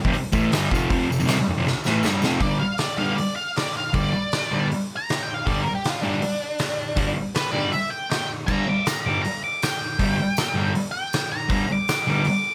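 An oversized, low-tuned drum kit with dark cymbals, a fat snare and a punchy kick booms in a stone room alongside a thick, double-tracked fuzz guitar riff and a jingly tambourine, launching a swaggering, rowdy garage rock excerpt at 159 BPM that shifts from F5 to G5 after a drum fill as a picked octave-fuzz lead guitar tears into a solo at 2.4 seconds, with the tambourine returning at 8.9 seconds under light reverb.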